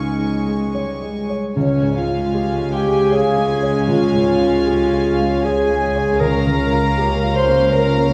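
A dark, distant French horn section enters at 1.6 seconds with sustained chords. Its light vibrato and roomy tone sit in the background of this emotional, uplifting film-score passage, cut from a longer orchestral piece. A soft-attack violin section carries the melody sul tasto with a pure, floating quality, while a second violin line and a clear solo clarinet in classical style add supporting voices. A warm, present baby grand piano and a viola section supply accompaniment, and a very quiet concert harp rings out fingerpicked arpeggios. Underneath, an intimate cello section holds the bass on Db, joined at 1.6 seconds by a woody double bass section with vibrato. The music moves freely in rubato at 78 BPM in 3/4 and Db lydian, opening on a Dbsus2 chord, with the orchestra set in a wet scoring-stage reverb heard from further back in the room.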